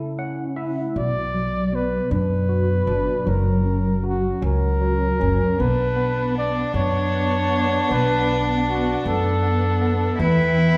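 Acoustic folk-pop ballad in 6/8, heartbroken and intimate, where a breathy, whispered flugelhorn carries the melody with jazz-style vibrato over a barky tine electric piano with phaser, joined at 1.0 seconds by a woody pizzicato upright bass and from 5.6 seconds by a reedy bowed cello's second line beneath very quiet, veiled con sordino chamber strings, set in the resonant reverb of a church or concert hall.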